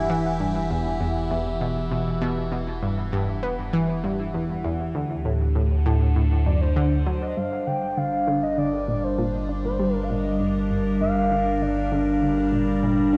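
Cosmic and expansive, this excerpt of ambient, sequencer-driven space music moves at 99 BPM in 4/4, starting in E minor through Em and D7 before shifting to G minor on a Gm7 at 7.4 s, where a filter sweep colours the arpeggio sound. An up-front, morphing sine wavetable pad holds sustained chords through phaser, shimmer reverb and cassette tape, over a deep, round sub bass, while a detuned sawtooth analog pluck repeats a bright, decaying riff through chorus and analog delay. From 6.5 s to 12.1 s an expressive, dark sawtooth lead sings a smooth melody with vibrato, all set in a wet spring reverb and the soft haze of a home cassette recording.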